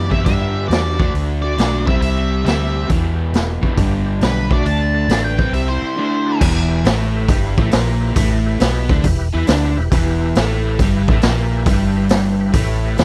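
A dark, fuzzed-out lead guitar carries the melody in this brooding, gritty stretch of blues rock with a southern rock lean, its distortion trailed by a slapback echo. A smoother, overdriven second lead sits in the background beneath it, and both guitars drop out at 6.4 seconds. The groove moves at 137 BPM in a swung 4/4 in E minor. A crunchy, double-tracked rhythm guitar pushes a picked riff up front, alongside a round, punchy, foam-muted fingered bass and a raw garage drum kit with a boomy kick, medium-tuned snare, hi-hat and crash, whose top end is rolled off. A thick tonewheel organ holds sustained chords in the background, its key click and percussive attack turning through a slow rotary speaker with chorus vibrato. The chords cycle through G, D, C and Em, and the dry, close 1970s-style studio sound keeps the whole trio tight and immediate.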